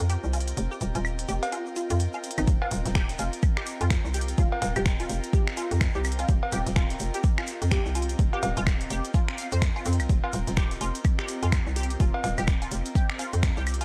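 Clinical and sparse, this minimal techno excerpt at 126 BPM with a swung 16th feel sets a hollow, bouncy FM bass, garage drum kit with finger snaps and crisp hats, a grainy tube shaker, distant bowed strings, a swarming granular drone and a squelchy, resonant blip pluck riff run through phaser, chorus and analog delay against woodblock and cowbell, opening on an F7(no3) chord, until the drop at 2.5 s brings in an overdriven deep electronic kick up front and a very quiet unplugged kit of hi-hat and snare, the whole thing dry and gritty with a cassette-tape character.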